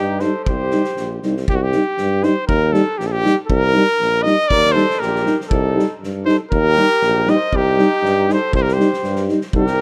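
A trumpet, flugelhorn and tuba open this restless, bittersweet Balkan brass band passage together, in C minor at 119 BPM in a lightly swung 2/4. The trumpet carries the melody up front in a warm, classical style with light vibrato, while the tuba holds a present bass line beneath. From 0.2 seconds, two dark euphoniums play the accompaniment, one with a smooth top. A loose acoustic drum kit joins them, its tight kick and fat snare sounding distant and roomy with a rolled-off top. The flugelhorn's second line has vibrato and a distant quality; it drops away after 1.2 seconds and returns in the background at 4.5 seconds, as the harmony alternates between Cm and Eb. Light reverb and small-room ambience give this excerpt from a longer piece the feel of a rough home demo.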